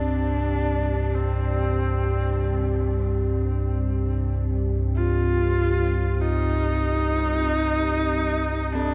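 Drenched in a cathedral-sized reverb with a 5.1-second decay, this cavernous, ominous dark ambient drone drifts in free time, cut from a longer piece and resting on a Gsus4/C chord. A rumbling low drone sits up front beneath a moody, warbling pad of sustained chords with chorus, while a husky, bowed horsehead fiddle carries a focused melody between C4 and F4 with vibrato, portamento and delay. At 8.8 seconds, an eerie, inharmonic synth bell flickers in with a brief arpeggio on C4, colored by chorus and tremolo.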